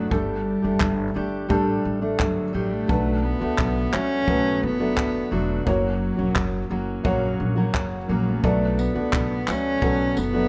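Reflective and wistful, this short acoustic pop passage at 87 BPM in B minor sets a dark, close, bowed cello melody with vibrato over a mellow felt-muted upright piano with audible action noise, a full-bodied fingerpicked dreadnought guitar held up front, woody pizzicato upright bass on gut strings, and a compact cocktail kit of punchy kick, handclaps and tambourine with a rolled-off top, under light reverb as the chords move from Gsus2 through Bm7 and F# back to Bm7.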